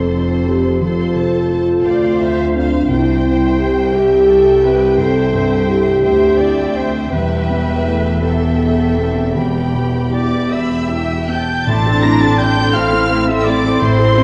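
In a rubato 6/8 at 51-58 BPM, this moving, bittersweet cinematic orchestral passage sets a distant, focused violin melody over a lush second violin line, smooth violas, a dark French horn section holding sustained chords, bowed cellos and double basses, and a soft felt-muted upright piano with audible action noise in the background, an oboe entering at 10.1 s and a hollow wooden flute and mellow clarinet joining at 11.7 s as the harmony turns to A minor, all wrapped in scoring-stage reverb and the warbly pitch drift of worn cassette tape.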